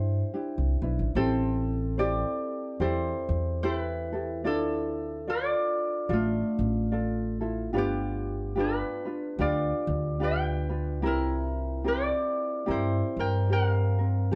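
A ringing, fingerpicked Celtic harp carries the melody up front in this relaxed, sunny Hawaiian excerpt in A minor at 73 BPM with a swung 4/4 feel, over a light, thumb-plucked ukulele and a woody, dark pizzicato upright bass on steel strings, all playing throughout as the chords move from Cmaj9 through Am7, Dmadd9 and G7 to C7, set in a moderate studio reverb with a dark, warm production.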